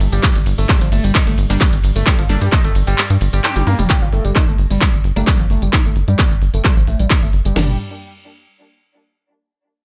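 A relentless, industrial slice of driving peak-time techno in G minor at 131 BPM opens at once with a tight, punchy sawtooth sequencer bass pumping against the sidechain, a very quiet, eerie FM drone that stops at 3.9 s, and two layered, tape-warm electronic drum kits up front: a heavy kick, cracking snare, toms and crash under smooth hats, ride, handclaps and tambourine. A gritty, screaming overdriven lead riff with phaser, tube saturation and tape echo rides on top, and from 1.5 s a muted, detuned dub chord stab with cassette-tape grit and delay pulses in the background. The kick drops out briefly while a drum fill and band accent arrive, and filter sweeps on the bass and lead push the second half forward, all in a dry, close sound.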